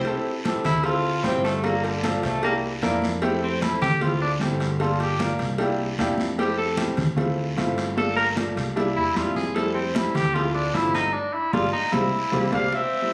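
Round, low-tuned cowbell and bongos open this danceable, sophisticated Afro-Cuban jazz cut at 152 BPM, joined at once by bright, high-tuned congas, a raspy guiro and a dark, intimate baby grand piano comping a ii-V progression in F, while a woody, thumpy pizzicato upright bass settles in beneath a clear, vintage-toned tenor saxophone soloing up front with vibrato, until a band accent from 11.1 seconds and a drum fill from 11.7 seconds lead into a present, vibrato-rich trumpet entering at 12.5 seconds.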